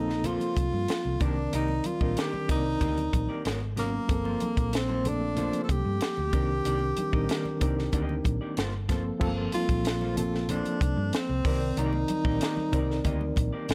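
Lush 1970s-style soul at 94 BPM in G minor, this smooth, silky passage is cut from a longer piece and moves through rich minor-ninth and eleventh chords such as Gm11, Cm9 and a passing Abm11. A clear, close-miked tenor saxophone carries the jazz-style solo melody up front, with light vibrato and a soft attack. Beneath it, a reedy electric piano comps through its built-in speakers, lightly overdriven and pulsing with a fast tremolo. A round, dark hollow-body bass holds the low end. The compact cocktail kit sits dry and up front, with a punchy kick, high-tuned snare and dark cymbals, and the congas, struck with hard hands, ring very quietly from a live room. A bright, twangy electric guitar, slightly broken-up through a small old amp, picks a riff in the background from 0.1 seconds, all wrapped in small room ambience.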